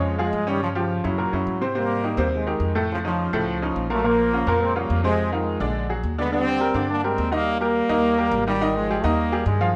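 A straight four-beat pulse carries this fiery, passionate salsa fragment, cut from a longer piece. A tight, punchy trombone section takes the melody from the start, close-miked and up front in a pop style, its brilliant tone shaded by light vibrato. Beside it, a bright, slightly detuned upright piano supplies the accompaniment with a woody, natural sound and short sustain, also sitting up front. Underneath, a pizzicato upright bass on gut strings gives a dark, thumpy foundation a little lower in the mix. After a brief opening passage, the music moves into a longer second section at 1.8 seconds, with harmony running from rich extended and altered chords like Abmaj9 and Faug7 to a bare Ab5 at 8.6 seconds. A moderate large-studio reverb lends the ensemble a sense of space.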